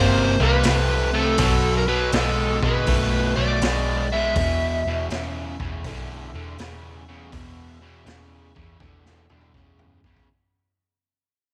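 Gritty and heavy, this swung blues rock and southern rock power-trio excerpt fades out throughout as an overdriven slide guitar carries the melody with slapback echo over a bright, double-tracked crunchy guitar riff and a dark, round, foam-muted electric bass, while a raw garage drum kit with a boomy kick enters at 0.6 seconds and plays a fill from 8.8 seconds, all in a small room with light reverb.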